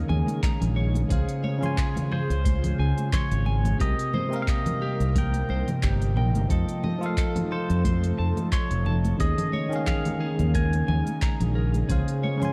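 Relaxed and warm, this sunset chillout excerpt rides a lightly swung 4/4 groove built on a deep, overdriven electronic kick, a smooth R&B kit of hi-hat, shaker and handclaps, very quiet congas and an up-front fingered electric bass. A bright, bell-like tine electric piano with tape echo and an airy, breathy pad treated with chorus and phaser carry the chords through Eb7sus4, Dbmaj7, Cm7 and F7, while a twangy electric guitar at the edge of break-up picks arpeggios through spring reverb. At 2.1 s a pedal steel guitar enters with a clean slide melody touched by 12-bit sampler grit and tape echo, and the production sits in a dark digital ambience.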